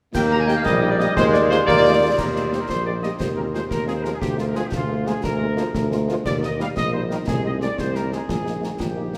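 An up-front, roomy tuba anchors this proud, spirited military-style march for wind band in 6/8 at 118 BPM in Eb major, carrying the bass beneath a mellow, tight trumpet section that leads the melody with light vibrato. For the first 2.1 seconds, a bell-like glockenspiel played with soft plastic mallets rings above a distant, very quiet flute group with a crisp attack, while a warm French horn section, entering at 0.3 seconds, and a clear trombone section holding sustained chords sit in the background. Concert snare drum, dark clash cymbals and concert bass drum drive the march, and the band sits in a wet concert hall reverb in this passage taken from a longer piece.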